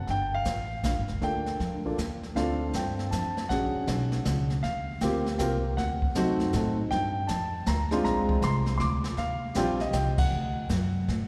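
A mellow, deep-voiced concert grand carries the melody up front in this moody, swinging jazz piano trio fragment in 3/4 at 158 BPM in G minor, its harmony moving from Gm7 through Bb7alt, Eb6 and D7b9 toward a closing D. A woody, thumpy pizzicato upright bass sits close beside it, while a brushed kit with shadowy cymbals, a medium-tuned snare and a boomy kick stays further back, and the band hits a shared accent at 10.1 seconds. A lingering church reverb surrounds the trio, giving the intimate playing a spacious, hall-like glow.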